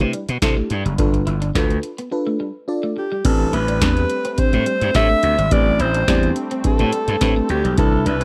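Danceable and slick, this excerpt of early-eighties boogie funk moves at 106 BPM in A minor. It is built on a booming analog drum machine with a deep kick and crisp snare, a gritty, growly overdriven slap bass up front, a dreamy chorused FM electric piano with a soft pad layer, and a clean picked electric guitar riff set in the background. After a break from 2.1 s, a breathy alto saxophone enters at 3.0 s with vibrato and a jazzy subtone, joined at 3.2 s by a very quiet, detuned unison pad with phaser as the harmony moves from Cmaj7 and G7 to Am11, all within a dry, close studio sound touched by digital ambience.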